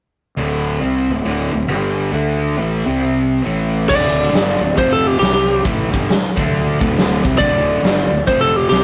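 Raunchy and gritty, this short cut of swung blues rock and southern rock at 137 BPM opens with a thick, double-tracked fuzz guitar riff over a growly, overdriven fingered electric bass, then at 3.9 seconds a twangy, slightly broken-up lead guitar melody and a punchy, up-front rock drum kit of kick, snare, hi-hat and crash cymbal join in, captured in a rough rehearsal-room recording with stone room reverb and saturated, dull-topped tone.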